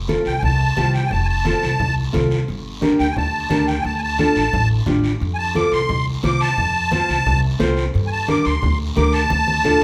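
A large studio reverb frames this sunny, festive cumbia excerpt in F major at 176 BPM, where a reedy, shimmering musette accordion carries the melody up front over a woody, thumpy pizzicato upright bass, a small thumb-plucked nylon-string guitar that adds a brief fill at 7.4 seconds, low-tuned congas in the background, and a raspy guiro.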